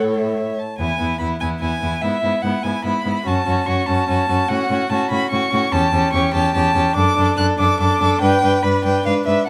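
A rich, focused first violin leads this spirited, lively classical-period movement for string quartet, its vibrato-laden melody sitting up front and reaching as high as F#6 with a smooth top. Set at a quick 145 BPM in a straight 3/4, the fragment begins in E major and shifts toward D major from 5.7 s, with chords moving from E through F#m, A7/E and D/F# to G and a closing G#dim. The second violin carries an even, close second line in a lower register, bowed with vibrato, while the viola fills in the accompaniment with an expressive touch of portamento. Underneath, the cello holds the bass between E2 and A2, expressive and sliding between notes, its sound both distant and up front, and it stops just before the others at 9.3 s. A moderate studio reverb gives the quartet a modest sense of space in this short passage cut from a longer piece.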